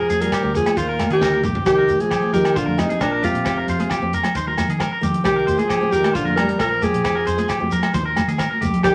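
An up-front alto saxophone carries the melody with light vibrato and scooped jazz phrasing over a mellow, punchy trombone second line, a bright, twangy electric guitar on the edge of break-up picking arpeggios, a dark, round dub bass, and a dry, tight funk kit that fills at 1.2 seconds, while ringing high-tuned congas, a grainy shekere, vintage agogo bells and a fingerpicked steel-string acoustic guitar with fresh strings sit in the background of this danceable, warm highlife excerpt, all bathed in studio reverb and vinyl crackle.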